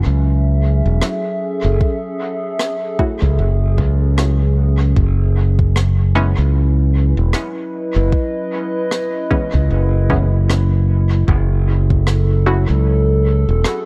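An echo-heavy mix gives this ambient dub excerpt a deep, meditative pull. It opens on a warbling, nostalgic tape-like pad holding sustained chords through chorus and its own reverb, alongside a bright, punchy fingered electric bass sitting up front. A rim click with dub echo enters at 1.0 seconds and a soft, overdriven electronic kick at 1.8 seconds, while from 3.0 seconds a muted, detuned chord stab adds short filtered plucks with subtle chorus, cassette tape colour and dub echo, as the harmony moves from F#m7 to C#m7 and back over a swung sixteenth feel.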